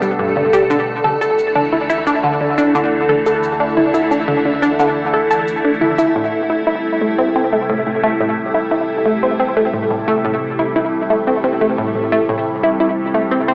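Ambient, sequencer-driven space music with a hypnotic, cosmic mood, heard as a short cut from a longer piece with a lo-fi, cassette-and-AM-radio character in a reverberant space. An up-front analog pluck plays a riff throughout, its nasal sawtooth tone carrying a noise layer, a quick filter snap and a short decay, treated with chorus, phaser, cassette tape and tape echo. Beside it, a bright evolving wavetable pad holds sustained chords, its detuned unison voices morphing between sine and triangle shapes with a ring-modulated edge, slow attack and long release, bathed in ensemble chorus, phaser and plate reverb. A deep, round sub bass sits very quietly underneath, mellow and sustained. Electronic shaker and toms with a tape-warm, small-room feel sit in the background before dropping out at 6.1 seconds, and the harmony moves from Gadd9 and Dsus2 to Am7 at 6.2 seconds.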